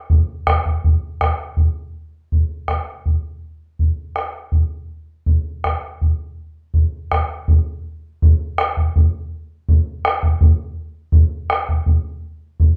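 Andean folk in a straight 2/4 at 82 BPM, this wistful yet festive fragment of a longer piece features a round, acoustic bombo that enters at 0.1 s and sounds both distant and up front in a large room, with light reverb over the recording as the music shifts into new sections at 1.6 and 7.5 seconds.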